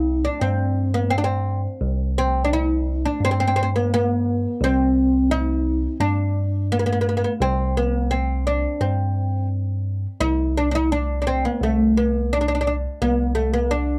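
A fretless oud leads this warm, stately Arabic maqam ensemble piece, its plectrum-plucked double strings sounding woody and up front as it carries the melody. Beneath it, a bell-like tine electric piano plays the bass line with a bright, clean, direct tone, also close in the mix. The dry, close recording has a 1970s studio character, and this short cut from a longer piece moves into a new section at 10.2 seconds.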